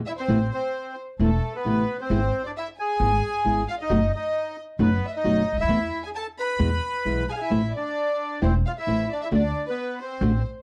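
A dark, wet studio sound frames this passionate, melancholic tango excerpt in A harmonic minor at 133 BPM with a rubato feel, where a reedy, vintage bandoneon carries the melody up front with plate reverb, a bowed violin section floats a soft-attack second line, a fingerpicked nylon-string guitar supplies small, squeaky-fingered accompaniment, and a woody, growly pizzicato upright bass anchors the chords moving from Amadd9 through E/G# and B7/F# to Am and D.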